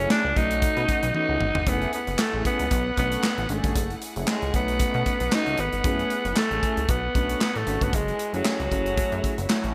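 A lightly swung sixteenth-note groove drives this slick, danceable early-eighties boogie funk clip, where a punchy acoustic drum kit with gated reverb and a short fill at 1.1 seconds pairs with a plucky, ring-modulated analog bass, while a raspy, growling alto saxophone leads up front over mellow, detuned synth brass with chorus, a very quiet lush bowed string section sustaining minor-ninth and seventh chords, and hollow group handclaps entering at 2.2 seconds, all in a bright digital production with a lush hall reverb.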